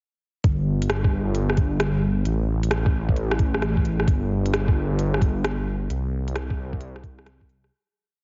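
Future garage at 132 BPM with a 66% swing on the sixteenths, this brief, ghostly, nocturnal piece sets a menacing, detuned saw bass with sidechain pumping, sustaining roots between G1 and C2, under a muffled, thumpy two-step kick and an overdriven electronic kit of crisp closed hats and rim clicks in a skittering shuffle, all squeezed into a dry, heavily compressed, cassette-dulled radio sound that fades out from 5.3 to 7.7 seconds.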